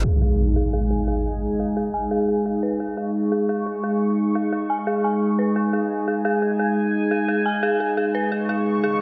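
Over a straight 4/4 feel, this futuristic, mechanical drum and bass passage opens with an up-front electronic impact as a bright, full-bodied, detuned sawtooth pad with ring modulation sustains resonant chords under a filter sweep, while an eerie, inharmonic FM bell with chorus, tremolo and tape echo spins dark arpeggios, all within a lush hall reverb and a dense, heavily limited master until a riser arrives at 8.5 seconds.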